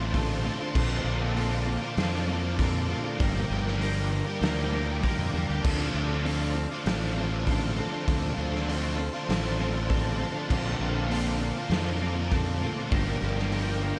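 A fuzzy, overdriven fingered bass sits up front in this dreamy, hazy shoegaze and dream pop excerpt at 99 BPM in D minor, joined by a biting overdriven guitar riff with ensemble chorus, a clean semi-hollow guitar riff treated with reverse reverb, a gritty, saturated garage drum kit with a fat snare and punchy kick, and a lush, warbling string machine holding sustained chords in the background as the harmony moves through Dm7, Bbmaj9 and Gm7 under a dark production with light reverb.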